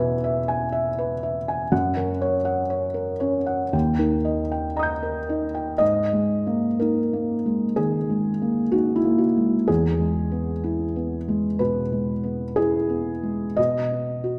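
Rubato in 4/4, this short, melancholic fragment of neoclassical minimalist piano features a solo felt-muted upright piano, soft, mellow and up front, drifting from E through F# and D# to a G#sus2 at 5.8 seconds and back to E before coming to rest on B, the piano set in a recital hall reverb within a dark, warm production.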